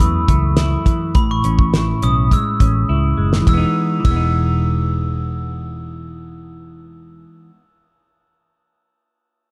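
Laid-back and dreamy, this short bedroom-pop and indie-pop fragment, cut from a longer piece, moves in a straight 4/4 through F#m7 and Amaj7 before settling on Emaj7 at 3.5 seconds. A glockenspiel struck with hard plastic mallets carries the melody high in its register, its bell-like, sparkling tone close-miked and dry yet dressed in analog chorus and a slapback echo. Up front, a clean, picked semi-hollow guitar supplies the accompaniment with a hollow-body character, subtle chorus and a vibrato effect, ringing on until 7.7 seconds. Beneath it, a vintage muted fingered electric bass sounds round, foam-muted and punchy, anchoring the low end. A damped 70s drum kit, acoustic and dry with a fat snare and tight kick, works across hi-hat, ride and snare, plays a fill just before the chord change and drops out at 4.2 seconds. The whole mix sits in a dark, warm studio ambience.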